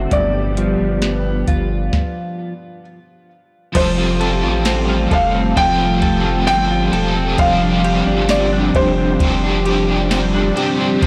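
A soft vintage rhythm box with a deep kick, crisp snare and metallic hats sets a straight, unhurried 4/4 beyond a brief stop between 1.9 and 3.8 seconds in this ethereal, dreamy dream pop excerpt, where a felt-muted upright piano sings an intimate tape-echoed melody over phased, chorused string-machine cellos, tape-echoed clean electric guitar arpeggios and a thick saturated sub bass, and a biting, double-tracked overdriven guitar with tremolo joins at 3.7 seconds, all within a moderate concert hall reverb and a blown-out, overdriven recording.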